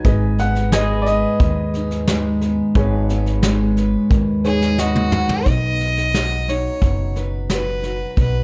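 Heartfelt and nostalgic, this brief honky-tonk and classic country excerpt in B major moves at an easy 89 BPM, as a brilliant vintage upright piano and a warm background upright piano open over picked jumbo acoustic guitar, clean fingerpicked pedal steel with volume swells, woody gut-string upright bass and a distant brush kit with a punchy kick, before a piano fill near 4.4 seconds brings in a clear, earthy fiddle melody with light vibrato at 4.5 seconds, followed by a drum fill near 4.8 seconds as the chords shift from G#m to B at 5.5 seconds, all in a dark, dry production.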